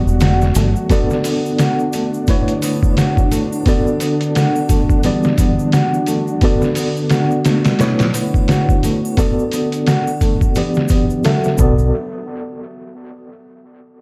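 This trip hop excerpt moves at 87 BPM in 4/4 with a 58% swing on the sixteenths. A pitched-down, muffled sampler-style drum kit sits up front, with an overdriven, compressed sound, a thumpy kick, a medium-tuned snare and hi-hat. An egg shaker and triangle with group handclaps add a small-room acoustic layer far behind. A worn, slightly out-of-tune tine electric piano carries the accompaniment through overdrive, tremolo, tape echo, 12-bit sampler grit and a filter sweep. Beneath it, a mellow sawtooth string machine voicing cellos holds slow-attack chords with ensemble chorus and its own filter sweep, while a thumb-plucked, ringing concert harp plays arpeggios through delay and a low-pass filter. The round, dark fingered dub bass speaks only briefly, near 0.1 s and again at 11.6 s, as the brooding, hypnotic B minor progression of Em7, Bm7 and Aadd9 turns to F#m7 and resolves on Bm7 before the parts fall away around 11.9 s, all set in a dark production with light digital reverb.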